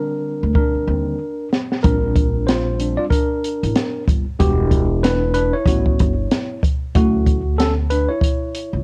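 Swung sixteenths in 4/4 give this relaxed, warm jazz-hop excerpt its lazy lope. A worn, slightly out-of-tune tine electric piano plays solo from the start, lightly overdriven through its built-in speakers with cassette-tape colouring, moving through Bb69, Em9, A13 and Dmaj7. A woody, thumpy gut-string upright bass joins at 0.4 seconds, and a dark, smooth open jazz kit with a high-tuned snare and boomy kick comes in at 0.6 seconds with a fill, all up front in a small, homey cassette-recorded room.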